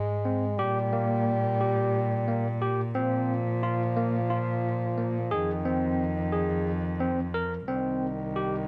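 A muted, bowed cello with vibrato and portamento sits close and dark, veiled beneath a distant, roomy French horn playing a classical-style second line from the very start, and at 0.3 s a bright, barky tine electric piano through a combo amp joins up front with clean arpeggios, giving this urgent, pensive piece of contemporary chamber music in 7/8 at 178 BPM (eighths) in F minor, cut from a longer work, a small-room ambience with light reverb and the character of cassette tape.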